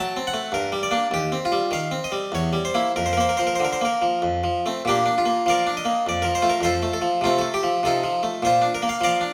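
Classical music in the manner of a baroque suite movement, this short passage cut from a longer piece feels radiant and serene. A solo Italian-style harpsichord carries everything, its plucked, bright tone coming from a single set of strings and sitting up front in the sound. The music moves in three-quarter time with a flexible, rubato feel, ranging from Eb2 up to Bb5. The opening phrase passes through diminished and minor colours before settling toward F, and a second statement begins at 4.9 seconds on Bb, leaning on F and F7 before closing on Bb at 8.4 seconds. A wet stone-room reverb lends the instrument a resonant, spacious halo.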